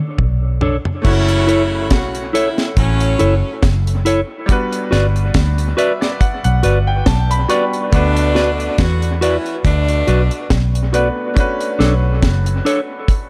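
A lightly swung sixteenth-note lovers rock reggae groove opens with a drum fill from the dark, dry kit with its high-tuned snare and tight kick, joined up front by a round, foam-muted bass, while a clear baby grand with audible action noise, a mellow guitar's stabs and the drums all carry dub echo, and an edgy, close-miked saxophone section with vibrato adds a second line from 1.1 seconds, all set in a small room for a tender, sweet excerpt cut from a longer piece, with a piano fill at 5.3 seconds over chords moving from Bm9 through F#m7, Gmaj7 and D6 back to Bm9.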